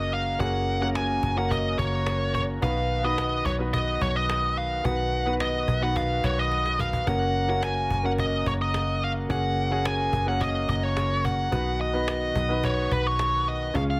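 Piano-driven pop with a bittersweet, dramatic mood, set in a straight 4/4 and cut from a longer piece. A bluesy lead guitar carries the melody up front, its picked tone dark and distorted, while a baby grand piano supplies warm, open accompaniment with long sustain. Behind them, a tonewheel organ holds reedy, bright chords, lightly overdriven with audible key click and a slow rotary speaker. A vintage fingered electric bass adds a round, foam-muted low end, and a woody cajon played with soft hands sits in the background, its faint snares sounding in a small room, with a fill from 6.5 to 7.1 seconds. The harmony moves between Gb and B, and light studio reverb gives the mix a gentle sense of space.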